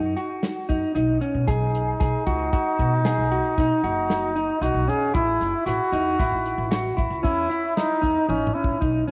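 A warm, smooth flugelhorn with light vibrato carries a jazz-style second line from 1.5 s, sitting up front over a dark, clean electric guitar playing compressed, fingered arpeggios with subtle chorus and tape echo. This driving, intricate progressive instrumental moves in 7/4 at 114 BPM, built on a woody, thumpy pizzicato upright bass with gut strings and a dry soul drum kit with a tight kick and rolled-off top, which adds a fill at 8.3 s. Cut from a longer piece, it has the character of a home cassette recording in a lush hall reverb, with chords moving from B through G#m7/B to A.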